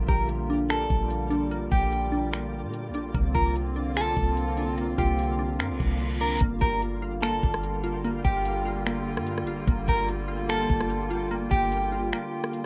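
Heard through light reverb, this rough home-demo mix has a dulled top end, and the clip is cut from a longer piece. It is hazy, ethereal cloud-rap hip hop in G minor at 147 BPM in 4/4 with a half-time feel, moving from Bb6 to C9sus4 and settling on Gm7 at 6.4 seconds. Up front, an electronic R&B drum kit pairs a knocking kick and metallic hi-hats with finger snaps and rim clicks, while a deep, round, sine-like 808-style bass decays darkly beneath. A dark, clean, fingered electric guitar carries the melody through digital delay. A hollow, flute-like pad holds detuned chords with chorus and sidechain pumping, as a glassy, crystalline wavetable pluck arpeggiates in the background with chorus and its own delay, and a twinkling granular texture adds an octave-up shimmer in its built-in reverb. An electronic reverse cymbal leads from 5.7 seconds into the second half, and the bass and guitar drop out for a brief break at 12.1 seconds, with the drums following at 12.6 seconds.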